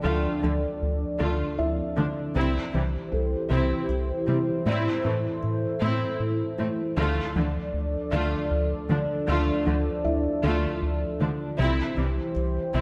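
A wet scoring-stage reverb, about 1.8 seconds long, surrounds this brooding, futuristic fragment of a hybrid orchestral and electronic film score in D minor. It moves at a slow 52 BPM in 6/8 with a straight feel, and the whole 12.8 seconds acts as a build-up over a Dm, C, Am, Dm, C progression. Up front, a dark, moody analog pad holds deep sustained chords with a slow attack and a sub octave, shaded by chorus and phaser. Beneath it, a round, sine-like analog bass carries the riff, while a smooth cello section sits in the background, bowed with vibrato. A focused viola section adds lush bowed accompaniment in the middle register. Further back, a felt-muted upright piano adds mellow, intimate texture with audible action noise and tape echo, and from 0.1 seconds a warbly, dusty lo-fi pluck spins nasal, detuned arpeggios through chorus and tape echo.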